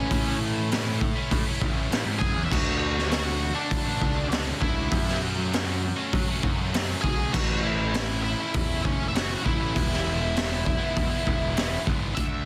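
A dense, heavily limited mix with light small-room reverb frames this restless, cathartic fragment of quiet-loud alternative rock at 99 BPM in 4/4, cycling through F#m7, Dadd9, A and E. Up front, a raw garage drum kit with a high-tuned snare and boomy kick sounds saturated and gritty, beside a punchy, overdriven fuzz bass, while a dark octave-fuzz lead guitar carries the melody over a double-tracked fuzz riff guitar set in the background. At 12.2 seconds, a clean, twangy electric guitar with subtle chorus adds a brief arpeggio just before the cut.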